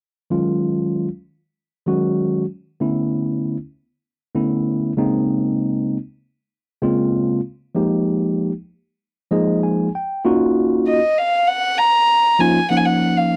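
A dry, close 1970s-style studio sound with light reverb frames this intense, funky jazz fragment, where a clean tine electric piano through a combo amp accompanies up front on minor eleventh and ninth chords and plays a fill at 9.0 seconds before a dark, floating sul tasto violin with a soft attack enters at 10.9 seconds to carry the melody.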